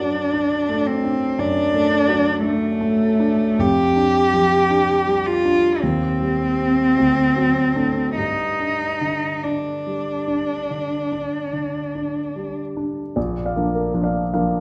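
A bowed cello and a concert grand piano begin together in this elegiac, melancholic romantic duo, a fragment of a longer piece. It moves slowly in 4/4 at 46-58 BPM with rubato, tuned to A4 = 442 Hz. The rich, expressive cello sings the melody up front with vibrato, portamento and a soft attack, while the warm, smooth piano supports it with deep bass and a vintage tone over harmonies moving from D/F# through Cm/Eb and D7 to G5. The cello falls silent at 12.6 seconds, and the piano carries on alone into a brief Bb passage until 14.6 seconds, all bathed in a wet recital-hall reverb.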